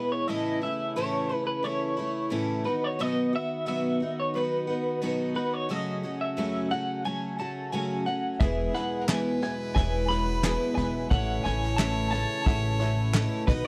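A steady, straight 4/4 pulse at 89 BPM carries this uplifting, nostalgic indie folk passage, cut from a longer piece, with an arrangement that builds as it goes. From the start, a boxy, shimmering picked twelve-string acoustic guitar sits up front with an octave-doubled accompaniment. An electric guitar through a small old amp carries the fingered melody with a slightly broken-up, lo-fi, compressed tone treated with tremolo. Beneath them, a mellow brass ensemble holds tight, classical-style sustained chords further back. At 8.4 seconds the band fills out: a woody, thumpy pizzicato upright bass on gut strings comes up front, and a vintage brush drum kit with a tight kick and rolled-off top pumps in a small room behind it. Alongside them, a rich, earthy fiddle adds a bowed second line with light vibrato, a dark upright piano accompanies smoothly in the background, and a twangy bluegrass banjo plays fingerpicked arpeggios. 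Crisp, close group handclaps join at 9.1 seconds, and the recording stays dry with little reverb.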